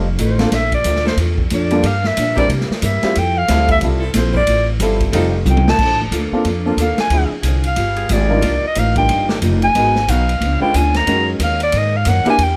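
Piano, picked acoustic guitar and pizzicato upright bass open this energetic big band swing cut at 182 BPM in F major, the bass woody and up front, the baby grand intimate with audible action noise, and the parlour guitar boxy and bright with finger squeak in the background. A breathy, vintage-toned clarinet takes the solo with vibrato from 0.2 seconds over a distant, roomy drum kit with a boomy kick and a drum fill at 5.5 seconds, while an edgy, close-miked saxophone section holds sustained chords in the background from 1.0 seconds. Light reverb frames the swinging ensemble as jazz harmony drifts through altered dominants to settle on Gb6.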